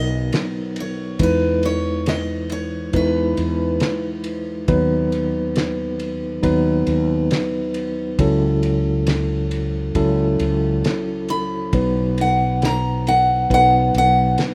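A picked steel-string acoustic guitar opens this nostalgic, hopeful folk-pop ballad in B major at 68 BPM, its full-bodied, up-front melody sitting over a clean tine electric piano and a round, amped fretless bass, with a cloth-damped drum kit of kick, fat snare and ride entering at 0.3 seconds in a muffled, gritty, lo-fi small-room sound. The guitar falls away at 4.2 seconds while the electric piano carries the changes through B/D# and F#m7/C#, then returns at 11.3 seconds, just before the harmony settles back on B. Tuned slightly sharp to A4 = 445 Hz, the passage has the rough, reverb-touched feel of a home demo and is cut from a longer piece.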